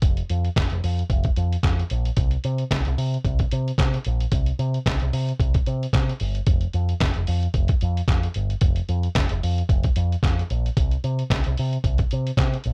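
A dark, round picked electric bass through an envelope filter and a muffled, compressed, pitched-down lo-fi sampler-style drum kit, with a thumpy kick, fat snare, hi-hat and handclaps carrying gated reverb, sit up front together from the first moment of this short, sultry and driving disco clip, its sixteenths lightly swung in an otherwise dry mix.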